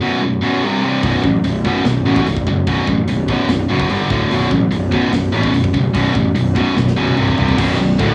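An up-front, high-gain distorted guitar drives this relentless, dark heavy metal excerpt at 147 BPM in B phrygian, joined from the start by a second heavy, high-gain guitar that sits further back. Both have a bright, cassette-worn distortion as they grind through power chords centred on B5, leaning on C5 and briefly touching G5 and D5. At 1.0 seconds a growly, punchy fuzz bass enters with overdrive, alongside a tight, polished metal drum kit with bright china, crash and hi-hat cymbals, a medium-tuned snare, a tight kick and toms. The drums play a fill at 6.8 seconds, and at 7.6 seconds a very quiet, double-tracked fuzz guitar joins. The whole piece has a lo-fi home-cassette character, with vinyl crackle, small-room ambience and light reverb.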